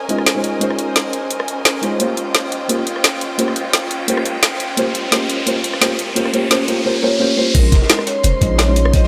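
Liquid drum and bass at 173 BPM in Bb dorian, this rolling, soulful passage is cut from a longer piece and moves from Bbm11 to Eb13 before returning to Bbm11 at the drop. A felt-muted upright piano, soft and intimate with short sustain and a touch of delay, carries the accompaniment up front over sustained chords from a lush, bowed string section with vibrato. An electronic riser drives the build-up from the opening until the drop at 7.5 seconds, while a drum and bass kit, with its woody snare, bright hats and overdriven sound, plays from the start through the drop. The vibraphone enters at 7.0 seconds with a metallic, ringing melody struck by hard mallets, its vintage, band-limited tone trailed by dub echo. At the drop a deep, mellow 808-style sine bass, a knocking electronic kick and a gritty, saturated breakbeat kit with a dark, rolled-off top join in, all set within a moderate hall reverb.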